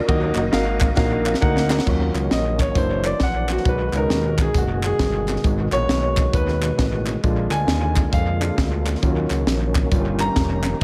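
A warm concert grand piano leads this fervent, soulful uptempo gospel excerpt in Eb minor, stepping forward with a fill at 1.2 seconds before taking a solo from 1.9 seconds to the close. The piano sits up front with an intimate, vintage character, deep bass and audible action noise, touched by analog delay. Underneath, a gritty, overdriven tonewheel organ holds sustained chords in the background through a slow rotary speaker and chorus vibrato, while a fat, detuned sawtooth bass with a saturated filter pluck anchors the low end. A crisp fusion drum kit, polished and airy with a high-tuned snare and punchy kick, drives the swung 4/4 groove at 134 BPM alongside close, dry group handclaps. The harmony moves from Ebm7 through Gbaug7, B6, Abm7 and Bb7 before landing on Eb7/G, all set in an echo-heavy studio reverb.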